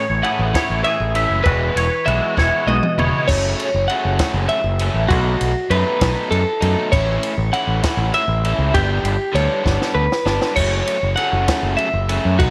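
A twangy, compressed electric guitar and a clean twelve-string electric guitar playing arpeggios open this wistful, playful math rock and midwest emo passage in 6/8, cut from a longer piece. They are joined almost at once by a growling, overdriven fingered bass sitting up front, a double-tracked overdriven guitar riff, and a dry compact cocktail kit with dark cymbals, a high-tuned snare and a punchy kick. The twangy guitar drops out at 3.3 seconds as the harmony moves into a new section, with drum fills arriving at 2.4 and 9.7 seconds, all set in a small room with light reverb.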